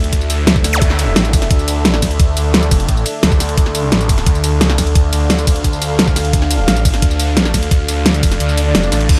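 A dry mix drives this tense, aggressive dark technical drum and bass cut at 174 BPM in D minor, where a swirling, saturated detuned saw bass with phaser and sidechain pumping sits beneath a deep, moody ambient pad with chorus, reverb and a slow attack, while a tape-warm dubstep kit of huge snare, bright hi-hats, ride, crash and tambourine is joined by a knocking, layered electronic kick from 0.1 seconds, a background zap flickers at 0.7 seconds, and the kick drops out at 8.4 seconds, shortly before a swell comes in at 8.6 seconds.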